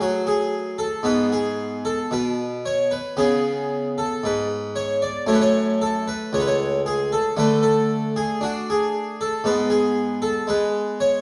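Introspective and grave, this brief excerpt of a baroque-style classical suite movement unfolds at a rubato 57 BPM in 4/4, featuring a solo French-style harpsichord that sounds close, full and plucked on two sets of strings, spanning C#2 to D5 through chords such as G#madd11, F#m and G#m, set in a recital hall reverb lasting 1.5 seconds and colored by the warbly pitch drift of worn old cassette tape.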